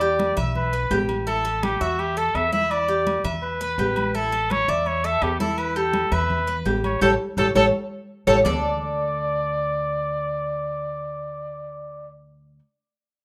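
A rough home demo mix in a wet small room frames this relaxed, warm stretch of Cuban son and guajira at 167 BPM in 4/4, moving through Em7 and A chords before landing on D5 at 8.5 seconds. Up front, a punchy vintage trumpet with vibrato carries the melody over bright, metallic double-string arpeggios from the Cuban tres, both bathed in plate reverb, while a woody, thumpy pizzicato upright bass holds the low end. Soft-handed congas with a thin skin and ringing timbales and agogo bells in the background play until 8.5 seconds, capped by a band accent and a drum fill.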